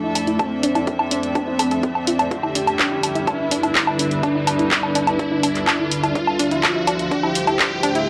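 This excerpt of melodic techno opens with a build-up at 125 BPM, where a thick, wave-folded unison lead sings its melody over a deep, warbling ambient pad sustaining Dm7, Em7/D and Fmaj7/D chords, with a soft, sul tasto string section floating beneath. The mood is melancholic yet driving, as sidechain pumping breathes through the lead, pad, strings and a nasal, detuned analog pluck whose bright arpeggios carry a filter sweep across the whole passage. An electronic riser climbs through the full 8.1 seconds, feeding the sense of anticipation. A punchy analog drum machine sits up front from 0.2 seconds with handclaps, hi-hat and woodblock in a large room, while a layered, tape-tinged electronic kick joins in the background at 0.4 seconds. The lead and pluck carry tape echo and chorus, the pad adds its own reverb, and the overall sound is dry and gritty, with transformer saturation and cassette character under a light reverb.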